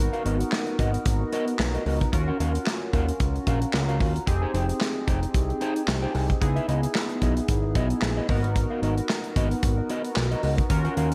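A glossy, chorused polysynth and a fat, saturated analog bass open this slick, funky early-eighties boogie funk excerpt at 112 BPM, moving through minor-ninth chords from Abm9 to Ebm9, Fm9 and Dbm9 with swung sixteenths. From 0.1 seconds a modern studio drum kit joins up front with a tight kick, a medium-tuned snare, hi-hat and handclaps under gated reverb, alongside a dark, clean, fingered electric guitar riff bathed in lush chorus. The synth and bass both carry filter sweeps, and a small room ambience surrounds the mix.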